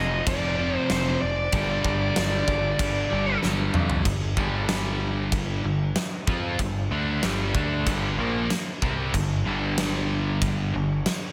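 A bluesy, distorted lead guitar with slapback echo leads this aggressive, heavy hard rock excerpt in G minor at 94 BPM, over a biting overdriven riff guitar, a brighter cranked stack guitar in the background and a growling, punchy overdriven bass, as a big, polished, airy acoustic kit with a fat snare joins at 0.3 s and plays a fill at 3.4 s before the band lands on a G minor chord at 4.1 s, inside a lush hall reverb with a big arena sound.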